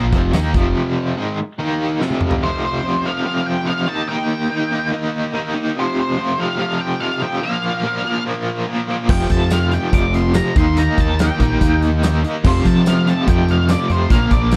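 A straight 4/4 groove in a cut from a longer classic rock piece carries a swaggering, sunny mood. The up-front cranked stack guitar, double-tracked and overdriven with a tremolo shimmer, plays a picked riff over F5, Eb and Bb5 chords throughout. It is joined briefly by a double-tracked distorted guitar tucked in the background, a growling fingered bass and a huge arena drum kit with a fat snare, punchy kick, crash, hi-hat, tambourine and toms. The band then drops into a break that closes with a drum fill from 2.0 seconds. At 2.4 seconds a warm octave-fuzz lead guitar takes the melody high above the riff. From 9.1 seconds the drums, the overdriven bass and the distorted guitar return beneath it, all captured as a dry, close 1970s-style studio recording with a small room reverb.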